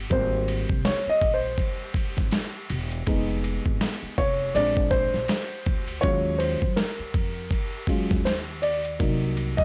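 A dark concert grand piano stands out front in this smoky, cool jazz-hop excerpt, playing a mellow, smooth, vintage-toned solo with deep bass and short sustain across its Gb3 to Eb5 range. It moves through lush jazz harmony, starting on Abmaj9 and passing through Fm7b5, Bb7 and Ebm11 before landing on Cm7b5 at 9.0 seconds. Underneath, a dusty soul sampler-style drum kit sits up front with a gritty, compressed, overdriven sound, pairing a thumpy kick and a medium-tuned snare with hi-hat and ride cymbal at a relaxed 81 BPM in 4/4 with a lazy sixteenth-note swing. A plucked upright bass adds a woody, warm low end from E1 to Gb2, colored by tube saturation. The whole fragment has a dry, hardware-recorded character with small room ambience and a layer of vinyl crackle.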